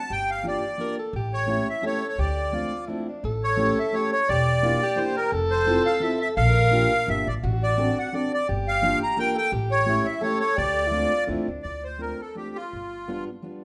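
Bittersweet and nostalgic, this swung musette waltz in 3/4 is cut from a longer piece, with a sweet, reedy accordion carrying the melody up front in its light tremolo tuning while a breathy tenor saxophone adds a mellow, subtone second line with vibrato and scooped notes until 11.7 seconds. Underneath, a woody, dark pizzicato upright bass sits forward in the mix, and a full-bodied fingerpicked steel-string guitar fills in the accompaniment through D minor changes. A moderate recital hall reverb surrounds the ensemble, and a new section begins at 11.6 seconds.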